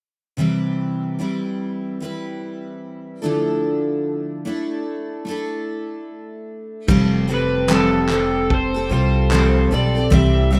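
This heartfelt, easy-going acoustic pop clip, cut from a longer piece, opens with a bright, full-bodied steel-string acoustic guitar, double-tracked and up front, picking through Cmaj7 and Dmadd9 chords with audible finger squeak on fresh strings. At 6.9 seconds the music moves to Fadd9 as the rest of the band arrives: a woody, thumpy upright bass played pizzicato on gut strings, and a loose indie drum kit with a punchy kick, dark cymbals, crash and handclaps, its sound saturated and gritty with a rolled-off top. A clean electric guitar, recorded direct and compressed, adds picked arpeggios in the background, touched with subtle chorus and tape echo. From 7.3 seconds an overdriven slide guitar carries the melody in a higher register. The swung sixteenth-note feel and light reverb with studio ambience give it the relaxed character of a rough home demo.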